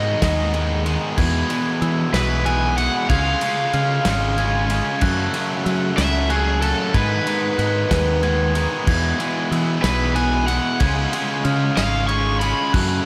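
A bright, overdriven cranked stack guitar carries a soaring melody through analog delay over two picked, distorted electric guitar riffs, an up-front, warm fingered electric bass and a loose acoustic indie drum kit with a punchy kick, while a mellow, bell-like glockenspiel played with rubber mallets enters at 1.2 seconds with background arpeggios in this euphoric post-rock excerpt in 6/8, set in a lush hall reverb with a big arena sound.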